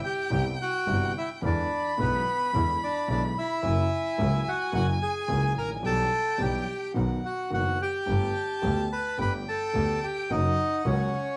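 A reedy, airy bandoneon carries the melody up front with a rich, focused bowed violin on a second line from the very start, while a vintage grand piano with short sustain and a biting, clear bowed double bass join at 0.3 seconds in this tense, sultry rubato tango fragment cut from a longer piece, all set in a moderate echo chamber reverb within a small room.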